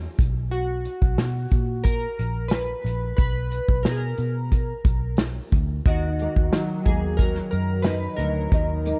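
Worn, warbling cassette tape and a small room colour this wistful, lonely indie and bedroom pop fragment, where a dark, round, foam-muted picked electric bass and an up-front acoustic drum kit with a punchy kick and bundle sticks open the piece, a glossy, bright retro synth carries the melody through lush chorus and tape echo, and a thumb-plucked nylon-string guitar with ensemble chorus and vibrato joins at 5.9 seconds.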